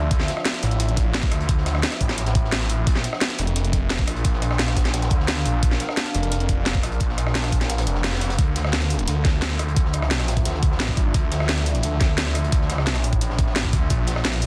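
A dense, heavily limited mix carries this aggressive, futuristic dark technical drum and bass excerpt at 174 BPM in D minor, where a snarling, detuned sawtooth bass growls up front over a deep, moody ambient pad with chorus, built-in reverb and sidechain pumping in the background, while a cracking, up-front electronic drum and bass kit with bright hats and rim clicks layers over a gritty, saturated breakbeat kit with a high-tuned snare and an overdriven, knocking electronic kick that drops out from 7.7 to 8.4 seconds, with a band accent landing at 8.0 seconds during that gap.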